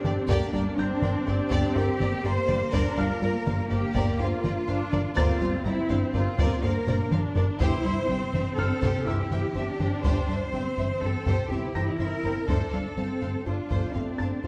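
This excerpt of a vast, tense hybrid film score opens at once on a full bed of sound: hard-stick taiko ensemble drums in a small room, a rubbery, hollow square-wave bass riff with a resonant filter pluck, and a felt-muted upright piano whose soft, vintage tone carries audible action noise and tape echo in the background. Bowed strings fill out the texture. A lush, distant symphonic violin section carries the smooth melody, a studio violin section sings an expressive second line behind it, and a close viola section supplies accompaniment while a focused cello section anchors the bass. Just after the start, a harp-like synth pluck adds very quiet, ringing arpeggios with chorus and phaser, and a clear symphonic double bass section holds a low G in the background. A dark, roomy French horn section enters at 0.3 seconds with very quiet sustained chords. The 5/4 pulse stays straight, broken by a taiko fill at 6.9 seconds, and the whole ensemble sits in a moderate scoring-stage reverb.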